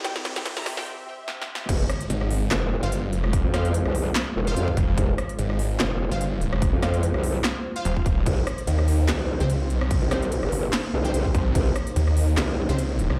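A brief, clear violin section line with digital delay opens this menacing, aggressive heavy wobble dubstep in F minor at 146 BPM with a half-time feel, over a lush, phased pad, a crisp big-room dance drum kit and a background riser and impact, before the drop at 1.7 s brings in a punchy electronic kick and an up-front wobbling growl bass with chorus and overdrive, followed shortly by a snarling, distorted, detuned saw bass and then bold orchestra-hit-like synth stabs with built-in reverb and delay.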